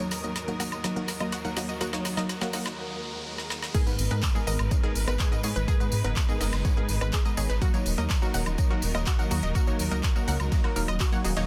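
This driving, bittersweet progressive house cut at 124 BPM in G# minor opens with a clear, bowed string section holding lush sustained chords, bright punchy unison pluck stabs with dub echo and a filter sweep, a mellow wave-folded pluck arpeggio carrying 12-bit sampler grit, a deep house kit with woody snare and smooth hats, a jingly tambourine, a glassy drifting texture in the background that drops out at 2.8 s and a very quiet electronic riser and swell, all building over D#m to the drop at 3.7 s, where a punchy, tape-warm electronic kick and a faint, gritty breakbeat sampler-style kit arrive on G#madd9, followed at 4.0 s by a dark, rumbling detuned saw bass that pumps in sidechain alongside the strings and plucks in a dense, heavily limited mix.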